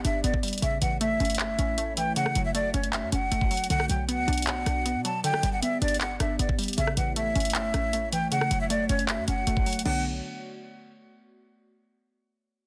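In this melancholic, eerie trap clip, a breathy, hollow jazz flute carries the melody up front in the upper register with vibrato, a soft attack and a digital delay trailing its notes. Beneath it, a bouncy square-wave pluck with a chorus sheen supplies the accompaniment, while a warbling, lo-fi pad sits dark in the background, holding sustained chords with a slow attack, long release and its own built-in reverb. The trap drum kit sits up front in a half-time feel at 156 BPM in 4/4, with a knocking kick, bright hi-hats, handclaps, rim clicks and a crash cymbal. A short, punchy 808-style bass with a tight, sine-based tone and fast attack anchors the low end in B minor. The harmony cycles through G, A, F#m and Bm, tuned to A4 = 444 Hz, and the drums stop at 9.9 seconds as a new section begins while the bass rings on until 10.2 seconds, all under light reverb and a dense, heavily limited modern master.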